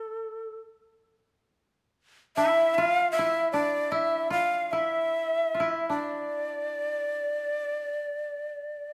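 A moderate reverb, like that of a scoring stage with a 1.5-second decay, surrounds this recording of Japanese traditional chamber music, cut from a longer piece. A bamboo shakuhachi carries the melody from 0.0 to 8.9 seconds, sitting up front with a breathy, bright tone, a crisp attack with audible chiff, and vibrato. Beneath it, the koto plays a second line in a lower register for the full span, its fingerpicked notes sounding dry and woody. The meter is four beats to the bar, but the rubato phrasing lets time stretch freely. The mood is solitary and still.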